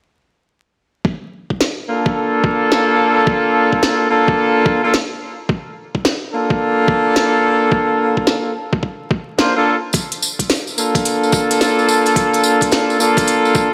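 A compressed, pitched-down, thumpy kick opens this playful, gritty glitch hop excerpt at 1.0 s, swinging at 108 BPM. It is soon joined by a glitchy electronic kit of tiny snare and clicky hats, and by up-front warm horn stabs with light vibrato that pump under sidechain, low-pass filtering and dub echo over a Bbmaj7 chord, before a jingly, close and dry tambourine arrives at 9.9 s, the whole mix set in plate reverb and vinyl crackle.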